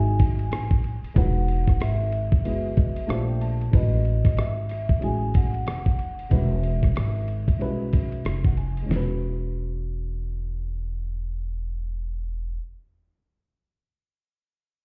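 A gritty, compressed sampler-style drum kit sits up front with a thumpy kick and fat snare, carrying a swung 93 BPM jazz-hop groove in E major until 9.1 seconds, while a woody pizzicato upright bass holds the low end. Over Emaj9, A#maj13, Amaj13 and E69 chords, a dark, boxy baby grand piano comps with short-sustain fills from 2.4 seconds, and a soft-mallet vibraphone sings an airy, ringing melody with slow motor vibrato until 8.2 seconds. The whole excerpt feels warm yet cool, heard as if muffled through a wall in a stone room with a vintage 12-bit dustiness on the drums.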